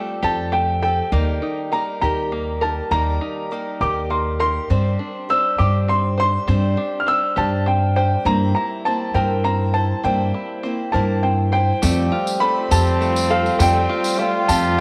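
The upright piano carries the melody up front, its tone woody and long-sustaining, in this hopeful, nostalgic indie folk excerpt set in a slow 6/8 at 67 BPM with a straight feel and a building arrangement. Beneath it, a picked acoustic archtop guitar gives boxy accompaniment with audible finger squeak, while an open-back banjo adds mellow, twangy, plunky fingerpicked arpeggios. A pizzicato upright bass with steel strings enters at 0.2 seconds, sitting up front with a woody, warm low end. At 11.8 seconds the arrangement grows as a clear, distant trombone plays a classical-style second line, a dark chamber string section adds bowed sustained chords in the background, played sul tasto with vibrato and a soft attack, and a jingly, compressed, saturated tambourine joins in. The harmony moves from Fadd9 through Eb, Gsus4 and C7/G before returning to Fadd9, all set in a moderate plate reverb.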